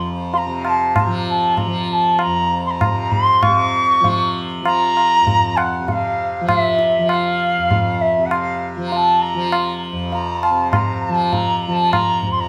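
Captured live in one room with a moderate, large studio reverb, this radiant, serene Hindustani classical excerpt speeds up in a straight four. An airy, reedy bamboo bansuri carries the melody up front with vibrato and tongued notes. Beneath it, a softly plucked tanpura holds a buzzing, shimmering drone, and a high-tuned tabla with a short ring and a close, dry sound joins at 0.3 s before the music moves into a new section at 3.4 s.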